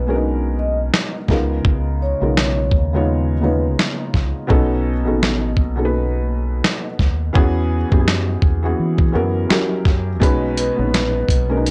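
This nostalgic, dreamy lo-fi hip hop fragment, cut from a longer piece, opens with a soft-mallet vibraphone melody over felt-muted upright piano and a deep dub fingered electric bass, set in B major at 84 BPM with a swung 4/4 feel. The vibraphone's metallic, ringing tone carries a slow motor vibrato, analog delay and plate reverb. It drops out at 3.6 seconds and returns briefly at 10.6 seconds. The piano sits intimate and up front with its own plate reverb as the harmony moves through chords such as B69, C#13, E69 and F#7b9, while the bass stays round, dark and punchy beneath it. A dusty soul sampler-style drum kit comes in at 0.9 seconds, gritty and compressed, with a thumpy kick, a medium-tuned snare and hi-hat, tape-warm and re-recorded in a large room, all heard within a moderate studio reverb.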